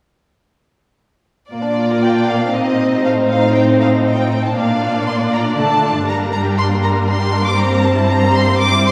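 A quick classical-period movement for string orchestra in Bb major, this spirited, graceful excerpt moves at 119 BPM in 3/4 with a rubato feel, all four sections entering together at 1.5 seconds and playing through to 8.9 seconds. Up front, a dark, expressive violin section carries the melody with vibrato and a soft attack, while a second violin section with a rich, focused tone takes the second line and the violas add smooth-topped accompaniment. The cellos, also up front, anchor the bass with portamento, all in a reverberant church or concert hall acoustic.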